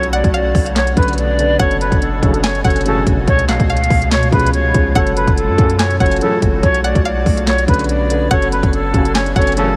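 A breathy, vibrato-laden jazz flute sings a dark, melancholic melody up front in this half-time trap hip hop piece at 143 BPM in F# harmonic minor, over hard-clipped kicks, a sharp snare, crisp hats and handclaps with vintage 12-bit grit, a punchy sine 808 bass, a cloudy granular pad and a twangy, chorused resonator pluck in the background, with a felt-muted upright piano with audible action noise entering at 1.0 seconds and very quiet, tight brass stabs at 2.2 seconds, all in a dreamy mix soaked in huge ambient reverb.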